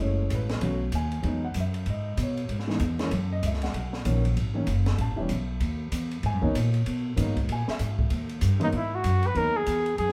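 Piano and upright bass open this late-night, moody swing-and-bop excerpt together, with the drum kit joining at 0.3 seconds. The grand piano comps with an intimate, natural tone, its action noise audible, while the woody, warm pizzicato bass sits up front on steel strings. The kit sounds acoustic, pairing dark cymbals and a high-tuned snare with a boomy kick across hi-hat and ride. Underneath, the harmony moves through a chain of minor-seventh, dominant and major-seventh chords before settling on G#m7. At 8.6 seconds a mellow trumpet steps forward as soloist, its scooped notes colored by light vibrato, and the piano drops out at 9.5 seconds, shortly before the clip ends. Light reverb gives the sense of a band playing live in one room.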